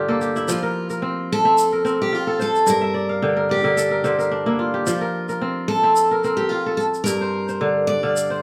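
The kora's bright, ringing arpeggios open this joyful West African string piece at 109 BPM in F major, with a lightly swung feel, joined at 0.5 seconds by a fresh-stringed, full-bodied steel-string acoustic guitar melody carrying audible finger squeak, while a grainy tube shaker sits close and dry beneath them, all set in a wet studio reverb over a brief cut from a longer piece that moves between F and G minor.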